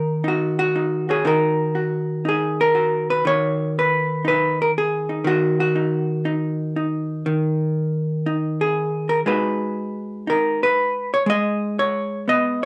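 A vintage hollow-body electric jazz guitar, dark, clean and picked, sits up front in this short solo jazz excerpt, carrying a late-night, swinging mood at 120 BPM in 4/4 with a swung eighth-note feel. Ranging from Eb3 to Eb5, it centres on Eb minor before moving to Abm7 at 9.3 seconds. Close, detailed microphones and little reverb keep the sound intimate across its 12.7 seconds.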